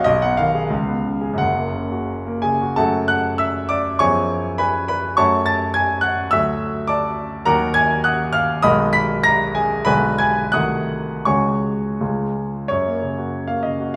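A polished grand piano opens this short passage alone, playing a romantic classical character piece with a lyrical, hopeful mood. The tempo moves freely with rubato between 78 and 106 BPM in 2/4, and the piece sits in F# minor before brightening into F# major from 7.5 s. The piano ranges from F#1 to B6 and sounds warm, present and up front, with a generous recital hall reverb that lingers for 1.8 seconds. After a brief opening statement settling on F#, a longer central passage from 2.8 s moves through F# minor and D before drifting into D# minor, a G# minor seventh, a half-diminished colour and a C diminished seventh. A suspended C# chord resolves to C#, and the opening material returns at 12.7 s to close on F#, as the passage is cut from a longer piece.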